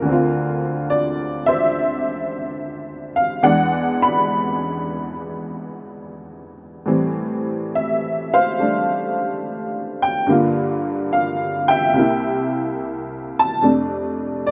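Loosely swung eighth notes at 71 BPM in 4/4 set an easy, rubato gait for this short solo jazz piece, a swinging and playful fragment cut from a longer work. A lone honky-tonk upright piano carries everything from 0.0 to 14.5 seconds, ranging from C2 up to B5. Its tone is detuned and jangly, with a woody, boxy body and a vintage character that sits up front in the mix. The harmony moves through Dm7, E7 and Am7 before turning to Gm7 and C7 and settling on F6 at 13.6 seconds. A light reverb lends the room a touch of air around the instrument.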